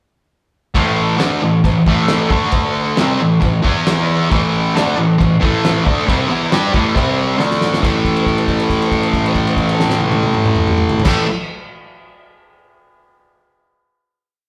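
A bright, double-tracked fuzz guitar and a cloth-damped, thuddy drum kit start together at 0.7 seconds. The guitar drives a menacing power-chord riff in A minor at 137 BPM, while the drums keep a garage stomp groove with a fat snare, tight kick and dark cymbals. This raw garage rock piece sounds like a band playing live in one large studio with moderate reverb, the distorted guitar sitting up front, until a drum fill at 7.4 seconds leads into a held final A5 chord at 7.8 seconds.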